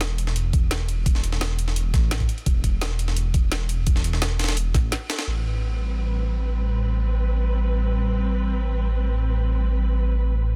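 Liquid drum and bass in a dreamy, melancholic mood, cut from a longer piece and driven by a straight, steady groove. A deep, rumbling detuned saw bass sits up front throughout, its sustained, saturated tone beating darkly beneath two layered drum kits: a gritty, pitched-up sampler-style break with a high-tuned snare and filtered hats, and an overdriven kit with a woody snare and bright hats. A knocking, overdriven electronic kick enters at 0.5 seconds and sits prominently in the mix. The band hits an accent at 4.9 seconds into a brief break, and at 5.3 seconds the drums fall away as a distant, bowed studio string section arrives on an Am9 chord, expressive with vibrato, portamento and a soft attack, pumping against the sidechain. The digital ambience and dense, heavily limited modern master give the whole passage a full, polished sheen.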